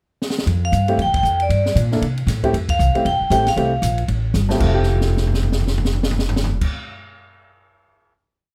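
A brisk swing feel drives this short, complete small-group jazz piece, opening with a drum fill at 0.2 seconds before the kit settles into a ride cymbal pattern with dark cymbals, a high-tuned snare and a boomy kick, while the pizzicato upright bass walks underneath with a thumpy, gut-string tone. Up front, the vibraphone states ringing, metallic hook phrases with medium hard mallets and fast motor vibrato until 4.0 seconds, as a woody upright piano comps in syncopated, rootless voicings with short sustain. Band accents punctuate the phrase, and from 4.6 seconds the group holds a final chord while the drums fill beneath it, all within a light reverb that keeps the warm, swinging mood natural.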